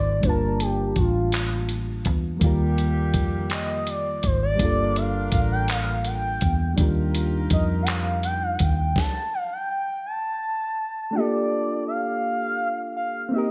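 This is a slow six-eight R&B cut from a longer piece, yearning and sultry, in G minor at 55 BPM counted in dotted quarters, swaying between Gm9 and Ebmaj9 chords. A smooth, gliding synth lead with a soft attack, vibrato and chorus sits up front, carrying a soft solo melody from the start. A reedy, clean electric piano with analog chorus fills out the harmony beneath it, while a dark, round, foam-muted fingered bass gives a punchy low end. A gritty, tape-warm sampler-style drum kit with a thumpy kick, handclaps, hi-hat and a medium-tuned snare comes in at 0.2 seconds, treated with gated reverb, and mellow jazz-style horn stabs with octave doubling slip in quietly at 2.4 seconds. At 9.0 seconds the band drops into a stop, the lead and electric piano carry on alone, and the Gm9 returns at 11.1 seconds, all in a bright 1980s-style digital production with light reverb.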